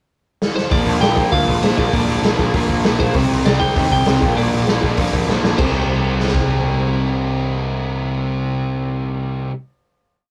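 A fast, straight 4/4 punk pulse at 197 BPM drives this aggressive, angry piece in C minor, led by a raw garage drum kit sitting up front: punchy kick, medium-tuned snare, hi-hat and crash cymbal in a fast punk groove, its dark, rolled-off tone set in a stone room. After a drum fill opens the pickup at 0.4 seconds, the lead guitar slips in at 0.6 seconds and the rhythm guitars and bass storm in at 0.7 seconds for a verse that moves between Bb and Cm, with a distorted electric guitar pounding driving eighth-note barre chords and an overdriven semi-hollow guitar adding hollow-body eighth-note power chords. Underneath, a fuzz picked electric bass growls through driving eighth notes, direct and amped with a bright edge. Over the top, a slightly broken-up, compressed lead guitar picks a motif-based melody in song phrases. Another fill pushes the band onto a final Cm chord at 5.6 seconds, and the guitars and bass ring on after the drums stop, all caught in a rough rehearsal-room recording with a moderate booth ambience.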